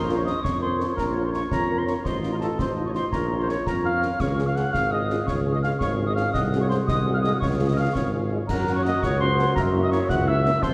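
A short cut from a martial, resolute wind-band march in a straight 6/8 opens with a mellow solo cornet carrying the melody over an up-front, warm tuba bass and a clear, tight woodwind second line, joined almost at once by a very quiet horn section, snare, bass drum and dark-toned clash cymbals, and a pure wooden piccolo with vibrato adding a high second line, all set in a lush church-like hall reverb as the minor-key harmony moves toward its relative major.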